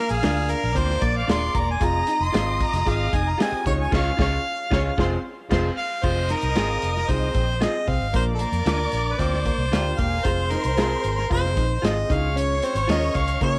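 A straight 4/4 groove at 114 BPM drives this passionate, urgent 1960s-style soul excerpt in F minor, built on a tight, punchy drum kit of kick, snare, hi-hat and crash and a dark, round, foam-muted fingered bass up front. A roomy harmonica with vibrato and tape echo carries the melody and solos for the first 6.0 seconds, while a lush bowed violin section sings a second line alongside a clear grand piano, a clean hollow-body jazz guitar riff and twangy, slightly broken-up stabs from a guitar through a small old amp. A band accent arrives at 3.9 seconds, and the chords move among Bb, Fm and Db under light reverb.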